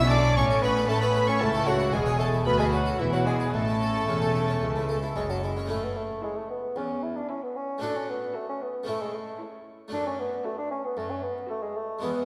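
A mellow solo bassoon leads this festive, lively baroque-style concerto movement, its lightly vibrated voice sitting up front yet carrying a distant, roomy quality as it sings the melody in its middle range. Above it, a chamber violin section also carries a melody line with a gut-string, period-style tone and light vibrato, while a second violin line runs beneath in the background. A dark, nasal viola section and a brilliant, airy harpsichord with three sets of strings fill in the accompaniment, the harpsichord's plucked part spanning from deep bass to the upper middle register. A cello section with a reedy, smooth-topped sound carries the bass throughout, joined by a rich double bass section that drops out at 5.7 s as the music moves into a new section. The harmony stays close to home, turning through A, Bm7/D and E7 before settling toward D/A and D/F#, all heard in a generous church or concert-hall reverb. 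The passage, in straight 4/4, is cut from a longer piece and runs to 12.2 s.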